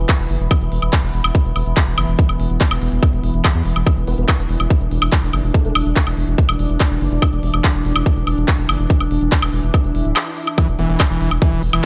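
A screaming, squelchy acid line cuts in near the close of this intense psychedelic trance excerpt, its distorted sawtooth tone bright and resonant on E3 with chorus, dub echo and sidechain pumping. Beneath it, a tight, tape-tinged electronic kick sits up front at 143 BPM in straight 4/4, joined by a layered drum-and-bass kit of crisp hi-hats, handclaps and woodblock. A round, deep analog bass with tube saturation anchors the low end, its wave-folded square, sine and triangle tones dark and sustained. An evolving wavetable pad holds mellow, warbling chords on an E5 harmony throughout, carrying 12-bit sampler grit, chorus, its own reverb and sidechain pumping. In the background, a nasal vowel-sweep wobble bass surfaces from 4.1 to 5.7 seconds and again briefly at 10.8 seconds through a formant filter, high-pass filter and dub echo. A soft electronic swell rises at 9.9 seconds just before the acid line arrives. 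The mix is dry and loud.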